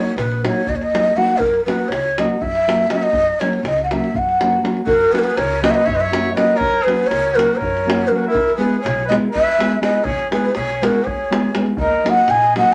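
A breathy, mellow ney carries the melody up front over dark, woody, thumb-plucked nylon-string guitar, with growly pizzicato upright bass and deep davul joining almost at once, in a wild, festive Balkan wedding-band piece in 7/8 at 243 BPM in F# mixolydian, the harmony moving early from D#m to F#. At 4.9 seconds a clear, distant trumpet with light vibrato adds a second line, and the harmony later shifts to E and then back to D#m. A small, wet room reverb surrounds this short cut from a longer piece.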